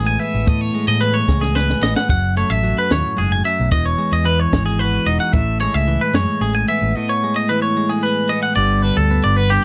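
A dry, close 1970s-style studio sound with small room ambience frames this intricate, playful math rock and midwest emo excerpt in 6/8 at 74 BPM in A lydian, where a bright twelve-string electric guitar with subtle chorus picks accompaniment, a twangy, up-front electric guitar spins bright arpeggios up high, a round, dark picked bass anchors the low end, and a compact cocktail drum kit with a high-tuned snare and punchy kick plays from 0.2 to 6.8 seconds, adding a fill at 1.3 seconds, while the chords move through Amaj9#11, F#m9, Emaj9 and back to Amaj9#11 before shifting to Gadd9 at 8.6 seconds.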